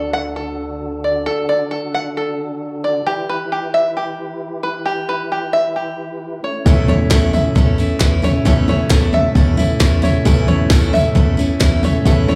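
Indie folk with a hopeful, nostalgic mood, this excerpt opens on a plunky, twangy banjo playing arpeggios over a round, mellow tonewheel organ with slow rotary swirl and a brief fingerpicked acoustic guitar, then builds from 6.6 seconds as a dark woody upright piano enters, followed at 6.7 seconds by a bright picked acoustic guitar, foam-muted electric bass, an up-front electronic drum kit with a soft kick and tiny snare, and a distant jingly tambourine, with crisp group handclaps joining at 7.1 seconds, all heard as a live gig through a club PA with light reverb.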